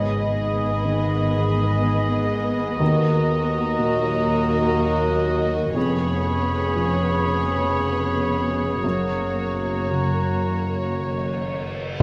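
In a rubato 3/4, this moving, longing cinematic film-score passage sets a dark, woody violin section on the melody, with airy flutes, a mellow solo clarinet, a warm oboe and a floating, sul tasto second violin section weaving lines above a lush viola section, a felt-muted upright piano with audible action noise, French horns holding chords in the background, ringing thumb-plucked harp arpeggios, and a bass of distant bowed double basses and rich cellos, inside a wet recital-hall reverb.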